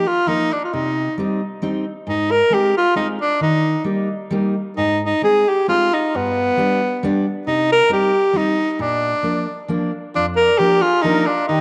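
A bouncy waltz at 134 BPM in 3/4, with a light swing on the eighth notes, drives this festive alpine dance band piece, cut from a longer performance. A warm tenor saxophone carries the melody up front in a classical style, singing across the middle of its range. Beneath it, a full-bodied jumbo steel-string acoustic guitar is fingerpicked throughout, also sitting up front. At 10.1 s a dark trumpet slips in behind with a vibrato-laden second line, its slapback echo giving it a ghostly double as it plays to the end at 11.6 s. A wet spring reverb with a long tail bathes the sound, while the harmony moves from Ebsus2 through Cm, Ab, Eb and G before settling on Bb.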